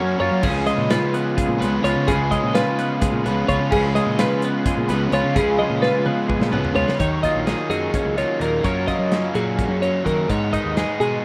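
Wistful and playful, this math rock and midwest emo excerpt races along at 256 BPM in 7/8, with a clean, compressed twelve-string electric guitar picking out accompaniment beside a double-tracked overdriven guitar riff and a growly fuzz fingered bass. From 0.2 seconds, a bright, twangy second twelve-string sits up front with arpeggios coloured by analog chorus and delay. A dark, smooth studio drum kit with a tight kick enters at 0.4 seconds and plays a fill from 5.6 seconds, leading into a passage that moves from D#m11 to F#maj9 and G#m, all within a rough home demo mix with light reverb, vinyl crackle and faint mains hum.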